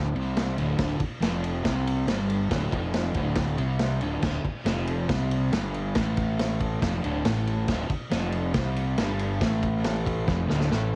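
A crunchy, double-tracked overdriven guitar riff and a round, fuzzed-out fingered bass open this swaggering, raw garage rock excerpt at 139 BPM, sitting on a D5 chord, with the guitar carrying a cassette-tape grit. A vintage acoustic drum kit joins at 0.2 seconds, up front and saturated, with a punchy kick, medium-tuned snare, dark crash and ride cymbals and a rolled-off top. The home cassette recording has a light reverb, and the drums play a fill from 10.3 seconds before the cut at 11.0.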